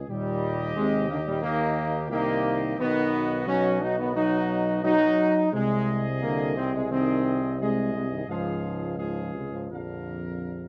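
A warm, up-front trombone section carries sustained chords through this triumphant, majestic classical brass passage, moving from Eb at 0.1 seconds through B, Ab/C and Db before settling on Bb at 9.7 seconds, at a stately 87 BPM in 4/4. A mellow, close-miked French horn section with light vibrato fills in lower sustained harmony, while a clear tuba with light vibrato anchors the bass from a distance. Above them a distant, roomy trumpet section, also touched with light vibrato, sings the melody, all set in moderate studio ambience in this short passage cut from a longer piece.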